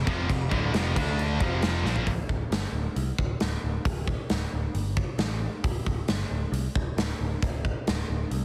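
Menacing and aggressive, this hard rock passage, cut from a longer piece, charges ahead in a straight 4/4. Three distorted electric guitars sit in the background, two of them high-gain, two scooped and one double-tracked, pounding out a riff over F5 and D5 power chords until 2.1 seconds, when they stop and the harmony drops out. A picked electric bass with a growly, direct-and-amped tone carries on through to the end. An acoustic arena drum kit with bright cymbals, a punchy kick and a medium-tuned snare sits up front in a big room, entering at 0.1 seconds and playing a fill at 1.8 seconds. Light reverb and heavily compressed, radio-style processing give the whole mix a dense, pressed-forward sound.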